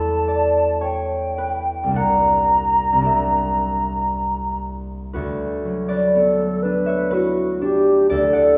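A mellow silver flute with soft attacks, gentle vibrato and rolled-off highs sings the melody up front, while a concert harp rings out a fingerpicked accompaniment beneath it from the very first moment, moving from Em9 to C9. This luminous, dreamy impressionist duo sways freely in a rubato three-beat lilt, settling into a new section on a D69 chord at 5.2 seconds. A lush recital-hall reverb surrounds both instruments, and the brief passage is cut from a longer piece.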